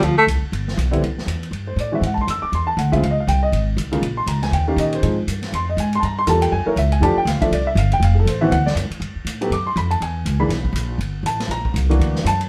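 This is small-group jazz in the swing and bop style, a sophisticated, warm excerpt moving at a brisk 240 BPM in 4/4 with a lightly swung eighth-note feel. The upright bass sits up front from the start, its plucked steel strings giving a woody, warm tone as it anchors the low end. A swinging drum kit of ride cymbal, hi-hat, snare and punchy kick sounds distant and roomy, with a rolled-off top, and stays well back in the balance. At 0.9 s the upright piano enters as accompaniment, present and polished, comping through rich harmony that moves from Abaug7 and Dbmaj7 to Gm9, F#7, Fmaj7#11 and Gmaj9. The band plays together live in one room with moderate studio reverb, giving the short passage a natural, cohesive sound before it cuts off at 12.5 s.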